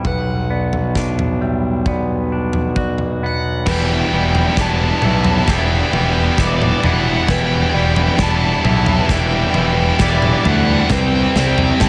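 Melancholic and cathartic, this slow post-rock excerpt in E minor at 66 BPM layers a crunchy overdriven guitar melody with analog delay over fingered clean guitar arpeggios, a muted upright piano with felt and audible action noise in the background, up-front fuzz bass and a big acoustic rock kit with a rolled-off top, building from 3.7 seconds as a tight, bright distorted guitar riff and a drum fill arrive, with a very quiet thick fuzz guitar joining at 10.9 seconds on Cmaj7.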